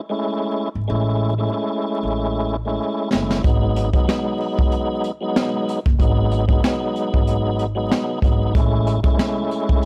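A tonewheel organ opens the piece at 0.1 s, full and clean with audible key click, chorus vibrato and a fast-spinning rotary speaker, sitting up front on an Amaj7 chord. This moody, gritty boom-bap hip-hop cut, taken from a longer piece, moves at 94 BPM in 4/4 with a light swing on the sixteenths and a G# phrygian colour. A pizzicato upright bass joins at 0.8 s, its woody, growly steel-string tone anchoring the low end. A jazz brush drum kit arrives at 3.1 s with a fill that carries the music into a darker G#m7 section, where it stays for most of the remainder before the harmony returns to Amaj7. The kit is dark and smooth, pairing a punchy kick with a high-tuned snare under a rolled-off top, and it sits up front in a small, intimate room. The whole mix carries a dry, gritty hardware character with transformer saturation and a bed of vinyl crackle, giving the groove a worn, warm patina.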